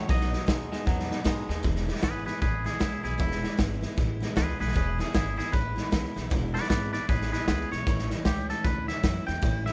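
Rockabilly in E major at 154 BPM, this rollicking, upbeat cut from a longer piece swings its eighth notes and sits dry in a small room. A twangy, scooped electric guitar carries the melody throughout, its clean picked lines trailed by tape echo, while a second compressed twangy electric guitar plays a low riff only in the opening 1.6 seconds. From 1.6 seconds a clean electric guitar solo runs to the end at 9.7 seconds, as the chords move from B to E and then to A at 7.9 seconds. Underneath, a woody, thumpy upright bass plucked on gut strings anchors the low end, and a bright, full-bodied dreadnought acoustic guitar plays picked accompaniment in the background. The raw garage drum kit, with boomy kick, medium-tuned snare and hi-hat, sounds saturated and gritty with a rolled-off top and a pumping room, sitting up front as the loudest part.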